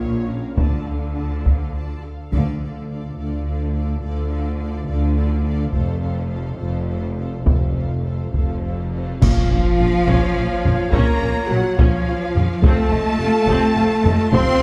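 Heroic and dark, this excerpt from an epic orchestral film score moves at 70 BPM in a straight 6/8, starting in D minor and shifting to B-flat harmonic minor at 9.2 s, where a pure, soft-attacked flute joins in the background alongside a huge, bright impact that is barely audible. Dark, expressive violins carry the melody with portamento over a clear, intense second violin line, focused violas and cellos, up-front double basses and mellow French horns holding sustained chords, while hard-stick taiko drive the rhythm from 0.6 s. Close, dry percussion with bright cymbals, triangle and concert bass drum punches accents at 2.3 s, a very quiet timpani sounds briefly, and a moderate scoring-stage reverb gives the production a dusky, lush depth.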